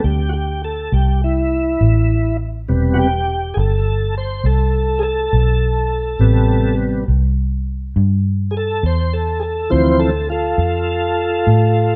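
A mournful, smoky slow blues in 12/8 at 68 BPM in A minor opens with a smooth tonewheel organ holding sustained chords through a slow rotary speaker and chorus vibrato, up front beside a dark, round, foam-muted fingered electric bass, the two playing live together in a moderate stone room over Am7 before shifting to Dm7 at 9.7 seconds in this brief cut from a longer piece.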